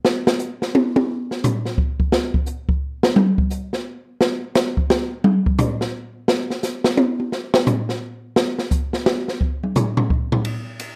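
An open, acoustic jazz drum kit carries this whole passage, playing a solo that runs from the start to about 10.5 seconds. Hi-hat, ride cymbal, a medium-tuned snare, toms and a boomy kick all come through, and the kit sits up front in the mix. The feel is a swung jazz waltz in three, and the mood is hypnotic and open, with the solo spread over two passages of the same section. A moderate, large studio reverb gives the kit a sense of room, and the clip is cut from a longer piece.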